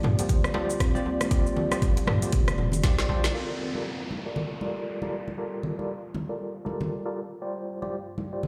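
A swung 118 BPM groove in 4/4 drives this spiritual, earthy afro house excerpt in G minor, built on a deep, up-front electronic kick, a filtered afro-pop kit with woody snare, dark hats, cabasa, rim clicks, toms and crash, soft-handed thick-skinned congas, a tight cracking djembe, and a boomy sine 808-style bass pumping beneath. Over this, a plucked woody kalimba ripples arpeggios through dub echo, a barky, gritty overdriven tine electric piano fires tremolo stabs through a combo amp, and a moody, nasal, detuned analog pad holds sustained chords in the background, all moving between Bb6/G and Gm7. Around a drum fill, the kick, kit, djembe, bass and kalimba fall away between 3.0 and 3.5 s, leaving congas, pad and electric piano to ring in a stone room as an electronic downlifter sweeps until 7.4 s.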